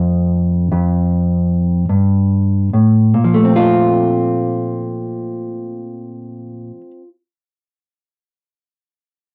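A dark, clean, fingered hollow-body electric jazz guitar sits up front in this relaxed, warm solo jazz fragment, playing alone from 0.0 to 7.1 seconds across a range of F2 to A4. In a slow, rubato 4/4 of around 46-57 BPM with a swung feel, it slows down over an F9 chord before moving to Bbsus2 at 3.2 seconds. The guitar carries a cassette tape character, and the home cassette recording places it in a short, wet booth ambience, tuned to A4 = 441 Hz.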